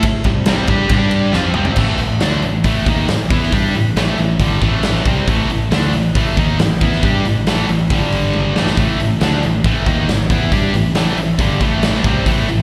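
A straight, driving 4/4 groove opens this menacing, heavy hard rock excerpt, with a huge, punchy arena drum kit up front and fills at 1.3 and 8.3 seconds, while a round, dark fingered electric bass sits beneath. A bright, high-gain guitar with slapback echo leads the riff up front, joined by a picked, overdriven guitar further back that also carries slapback echo. The riff moves over C5 and G5 power chords before settling into A minor at 1.8 seconds, and the whole thing sounds like a live gig heard through the venue's PA with a touch of hall ambience.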